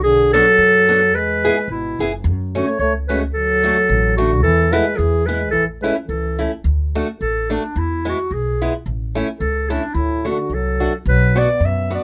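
Light reverb gives this bouncy, jolly alpine folk dance tune, cut from a longer piece, a gentle sense of space at 109 BPM in a swung 2/4. A soft-attacked, roomy clarinet sits up front with the melody. A mellow euphonium plays a second line, dropping out at 6.5 seconds and returning at 10.0 seconds. A growly, woody pizzicato upright bass and a boxy, picked old ladder-braced acoustic guitar with audible finger squeak drive the accompaniment. The music moves from A major to D major at 6.6 seconds.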